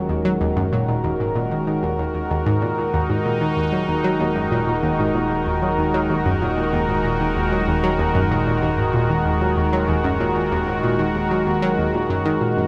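Ambient music with a cosmic, hypnotic mood, this short piece cut from a longer work rests on a single Eb minor chord as a bright, detuned sweeping pad holds up-front sustained chords with a soft attack and chorus, a round, wave-folded analog pluck repeats a riff with fast-attack, decaying notes, filter sweeps, chorus and delay, and a fat, nasal analog bass fades in from the background, all set in a vast, echoing space with a huge reverb.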